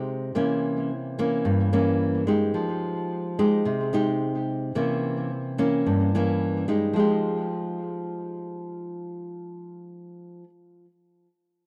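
A lone fingerpicked nylon-string guitar opens this short bossa nova fragment, its acoustic, classical-style tone sitting up front with a touch of tape echo. The intimate, wistful mood rests on an alternation between C7b9 and Fm9, with a new section arriving at 7.0 seconds before the clip is cut from the longer piece at 10.5 seconds. Light reverb softens an otherwise dry, close 1970s-style studio sound.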